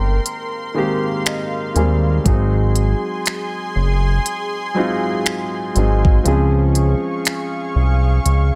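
A dry, close, up-front sound frames this tender, dreamy slice of contemporary R&B, a short excerpt cut from a longer piece, moving at a slow 60 BPM in 4/4 with a swung sixteenth-note feel. A concert grand piano with a deep low end carries the accompaniment, adding a fill between 0.8 and 2.3 seconds as the harmony shifts from Abmaj9 to Ab7. Underneath, a fat analog bass with a nasal, saturated sawtooth tone and a moving notch holds down the low register, the loudest part in the mix. A lush, detuned unison pad with slow attack and long release sustains chords high above, softened by chorus. The electronic drum kit enters at 0.3 seconds with finger snaps, smooth hi-hats and a knocking, tape-colored kick, and the kick drops out at 6.3 seconds as the chords settle on Dbmaj7.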